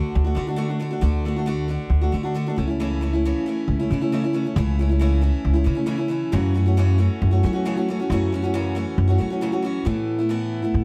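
Folk rock with a heartland rock lean, this jangly excerpt moves at 136 BPM in a straight 4/4 in A major, drifting from D through A/C# and F#m7 to a closing Asus2. A bright, picked steel-string acoustic guitar with fresh strings and audible finger squeak sits up front, joined at 0.2 s by a woody, thumpy plucked upright bass that is just as close and slightly louder. Light reverb and a dark, warm production wrap the pair in a warm sound.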